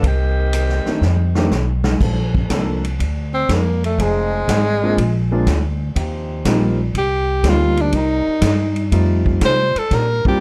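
A clear tenor saxophone carries this energetic, joyful big band swing excerpt, entering at 3.3 s and soloing up front with vibrato, subtone and plate reverb over a lively 122 BPM swing in Bb major. Before it, a mellow saxophone section with soft attack and a tight, vintage blend briefly states the melody, also touched by plate reverb, and a drum fill leads into the solo at 2.0 s. The swinging drum kit sounds distant and roomy, with a boomy kick, medium-tuned snare and rolled-off top across hi-hat, ride and crash cymbal. A woody upright bass with steel strings is plucked up front, while a grand piano with long sustain adds accompaniment from 0.9 s. Cup-muted trombones hold soft, veiled chords with light vibrato in the background, all within a dark production with light reverb that is cut from a longer piece.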